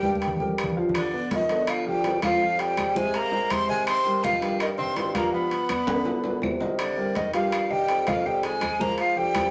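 A straight 4/4 groove at 164 BPM drives this sophisticated Afro-Cuban jazz passage in C minor, with bright congas from the start, ringing metal-shell timbales joining at 0.2 s, woody claves sitting in the background from 0.6 s, and drum fills opening the music and returning at 5.9 s. Up front, a breathy silver concert flute carries the melody with vibrato and lifted highs, while an intimate, whispered tenor saxophone adds a soft-attacked second line beneath it. A natural-sounding baby grand piano accompanies through chords such as G7, Fm9 and Cm9, a mellow bassoon supplies the bass, and the ensemble sits in a short, wet studio reverb.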